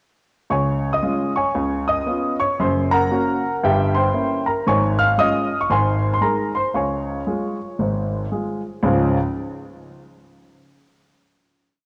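This home cassette recording carries a tape patina and an intimate, up-front grand piano, its action noise audible beneath a lush hall reverb that hangs for about 2.5 seconds. It is a short, complete piece of exuberant stride jazz in Db major at 115 BPM in 4/4, swinging its eighth notes. The concert grand plays alone from 0.5 to 9.2 seconds, ranging from Gb1 to F6: a stride bass with deep, natural low end supports a tune voiced in filled octaves. The harmony moves from Db through Db7, Gb and Gdim7 to Db/Ab and Ab before settling back on Db. A final chord arrives at 8.8 seconds and rings into the reverb until 10.9 seconds.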